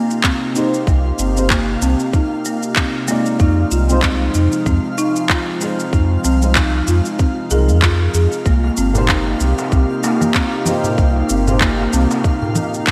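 Organic downtempo in C minor at 95 BPM with a swung, warm and earthy feel, this excerpt moves from Cm7 to Fm7 and back as a felt-muted upright piano with audible action noise and lush chorus comps over a warbling, nostalgic tape-like pad, while a woody soft-mallet marimba spins delayed arpeggios and a twinkling granular shimmer sparkles in the background, all driven by a tight, tape-tinged electronic kick, electronic shaker, handclaps and congas in gated reverb, a round, deep sub bass from 0.9 seconds, and a crisp, distant metal-shell darbuka joining at 8.6 seconds, set in a lush hall with bright 1980s-style digital production.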